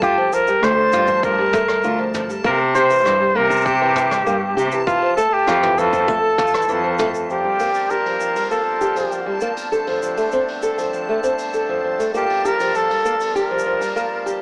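Folktronica at 99 BPM with a wistful, intimate mood, this excerpt sets a clear, punchy flugelhorn melody with digital delay up front over a dark, woody fingerpicked ladder-braced acoustic guitar playing filtered arpeggios, a soft brush kit of hi-hat, rim click, shaker and toms, and a dreamy, reversed granular texture in the background. A nasal, bowed cello carries the bass line from 0.6 s until 7.2 s, alongside a tight, overdriven electronic kick, and then a reedy, rich accordion enters with sustained chords at 7.3 s. The harmony moves from Gm9 through Fmaj7 to C7sus4/G and Gm7, all heard through a small room and a small-speaker sound.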